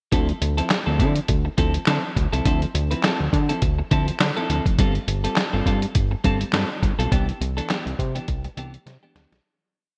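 A muffled, pitched-down sampler-style drum kit anchors this slick, danceable early-eighties boogie funk piece in D dorian at 103 BPM, its thumpy kick and clap-layered snare driving a swung mid-tempo beat through gated reverb. A fat, detuned sawtooth bass plays a syncopated boogie line with slides, while a clean, twangy electric guitar with subtle chorus chops out a sixteenth-note riff over Dm9, G9sus4 and Cmaj9. The bright digital-style breakdown fades out from 7.1 seconds, and a drum fill arrives at 8.9 seconds.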